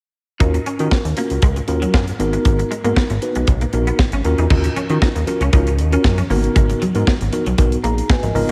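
A straight 4/4 groove from a punchy, up-front studio drum kit with a high-tuned snare, hi-hat and crash drives this slick, danceable early-eighties boogie funk, anchored by a glossy, retro synth bass with a plucky filter and fast attack. A mellow tine electric piano heard through its built-in speakers plays the accompaniment over Ebm9 and Abm9 chords, while a twangy, slightly broken-up electric guitar with ensemble chorus carries a riff, and bright, very quiet congas join at 4.5 seconds. The electric piano adds a fill at 7.6 seconds, and the mix sits dreamy in a lush hall reverb.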